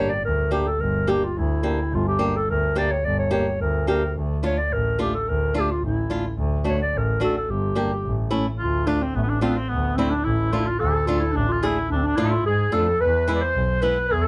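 A straight 2/4 pulse at 108 BPM drives this festive yet bittersweet klezmer excerpt, set in G dorian sharp4 before moving to D dorian sharp4 at 8.6 seconds. A breathy, whispered clarinet carries the melody with soft attacks, scooped notes and light vibrato, giving the solo an intimate, vintage, jazz-inflected tone. Underneath, a bright, boxy flamenco guitar with fresh strings is fingerpicked up front, while a single bowed double bass adds an earthy low end with its own light vibrato. At 8.6 seconds a cor anglais enters on a second line in a classical style, its tone gently vibrato-tinged. The harmony moves from Gm through Dm, D and A7, then settles on Dm before turning to E at 13.0 seconds, all within a dark production and a moderate studio reverb.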